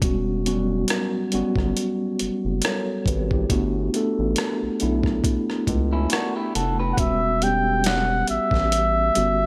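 Introspective and smooth, this slow neo-soul R&B excerpt at 69 BPM in E dorian sets a mellow tine electric piano over Em69 and Gmaj9 chords with a round, deep analog bass and a gritty, thumpy boom bap sampler-style drum kit of kick, snare, rim click and hi-hat swung on the 16ths, while a slightly broken-up electric guitar with tape echo adds a brief second line from 5.9 seconds before a breathy, whispered flugelhorn with light vibrato takes the melody at 6.9 seconds, all in light reverb.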